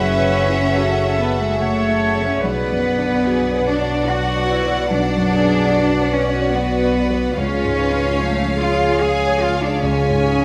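A lone cello carries the melody with a dark, intimate, sul tasto tone and light vibrato, alongside a floating violin section in the background, while a second violin section with a smooth top traces a second line. Beneath them, a mellow concert grand piano and a pure-toned viola section fill in the accompaniment, a distant French horn section holds sustained chords, a ringing harp plays arpeggios, and a bowed double bass section pairs with a rich cello section on the bass. This bittersweet, moving cinematic score flows in a rubato 3/4 over F#m7, Bm and C#, set in a moderate scoring-stage reverb and cut from a longer piece.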